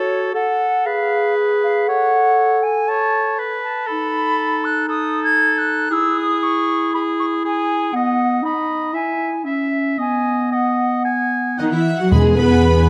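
A straight, fast 4/4 pulse drives this spirited, cheerful excerpt from a dramatic romantic movement for symphony orchestra, cut from a longer piece and settling into a bright major tonality after an unsettled minor opening. For the first twelve seconds a woodwind trio carries the music: a clear, up-front oboe, a mellow, roomy clarinet and a pure, silver flute with a crisp attack, each playing a second line over a progression that moves from F# minor through a diminished chord toward a steady alternation of E and B. At 11.6 s, as the flute drops out and the clarinet and oboe finish their lines, the strings enter, with lush, distant symphonic violins, rich, even violas and smooth cellos filling out the harmony and bass. At 12.1 s a warm, focused chamber violin section takes the melody in the background, joined by tight French horns sustaining chords, a rich double bass section on a low E and timpani struck with medium mallets as the music lands on E. 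The scoring stage lends a moderate reverb to the close, detailed sound.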